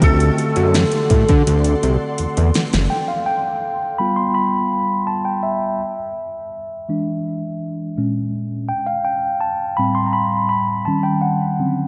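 A dreamy, reverb-soaked mix in a lush hall, its top end rolled off, frames this late-night, moody contemporary R&B excerpt at 83 BPM. For the first 2.9 seconds a buzzing, shimmering sitar line with delay (heard through 2.2 seconds), an ethereal pad with chorus and phaser and sidechain pumping, a thick sawtooth analog bass, and a smooth, up-front drum kit with soft kick, fat snare, rim click and metallic hats play together, the drums closing on a fill from 1.5 seconds. The mellow tine electric piano, present from the start, then carries on alone as a clean solo through 11.9 seconds over chords moving from G7 through E7, Bbm7 and Am7 to D#7.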